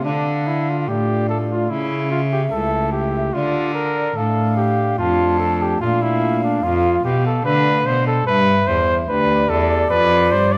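A straight, steady 4/4 pulse carries this flowing, serene baroque-style sonata movement, cut from a longer piece, in which a dark, punchy trumpet with light vibrato and a smooth top leads up front over a rich, reedy, gut-string cello bowing the bass line, while a pure, wooden baroque flute with crisp attack and lifted highs sings an expressive second line above soft flute stops on pipe organ in romantic voicing, heard in a wet recital hall.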